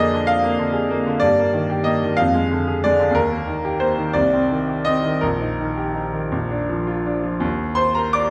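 A bright grand piano carries this brief romantic character piece alone, its brilliant, smooth tone sitting up front with a vintage colour and long sustain across a range from Bb1 up to D6. The music is in Eb major and 6/8, moving at roughly 54-65 BPM counted in dotted quarters, with a rubato feel that lets the phrases breathe. Its mood is passionate and hopeful, and the harmony travels from Bb7/F through Eb/G, Ddim/F, Eb, Cm, Eb/Bb and Bb before settling on a bare Eb5 at 7.4 seconds. A wet recital hall reverb surrounds the instrument, and the listener seems placed further back in the room, so the sound blooms around each chord. Tuned to A4 = 439 Hz, this short passage of about 8.3 seconds is cut from a longer piece.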